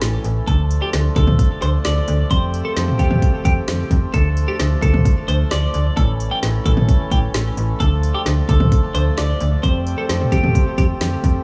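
A driving, nocturnal synth-pop passage opens on an up-front deep house drum kit with a deep kick, woody snare and smooth hats, a snappy, metallic FM bass and a reedy, breathing harmonium holding chords through Dm, Fadd9 and A, while a bright, twangy twelve-string electric guitar with digital delay enters at 0.5 s to play a clean, compressed second line in a digital ambience.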